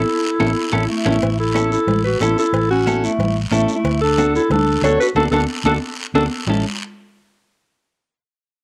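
A festive, danceable cumbia opens with a breathy, distant alto saxophone carrying the melody over a mellow clarinet second line with vibrato, an up-front, foam-muted fingered electric bass, a drum fill and a band accent, the two horns colored by cassette tape. At 0.4 seconds a clean, picked, compressed electric guitar joins, also with a cassette tint, along with bright, high-tuned congas in the background, a raspy guiro, and ringing metal-shell timbales and cowbell. The harmony moves from A to D at 3.9 seconds, and another drum fill and band accent arrive before a return to A, set in light reverb and the small-room ambience of a home cassette recording.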